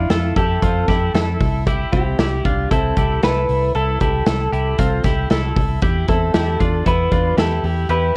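A boomy, up-front rock drum kit drives this bittersweet, restless jangly indie pop excerpt at 116 BPM, under a slightly broken-up lo-fi electric guitar melody, bright twangy twelve-string arpeggios and a dark, round foam-muted bass moving through Fmaj7, C6 and Em7, all set in moderate large studio reverb and the warbling pitch drift of worn cassette tape.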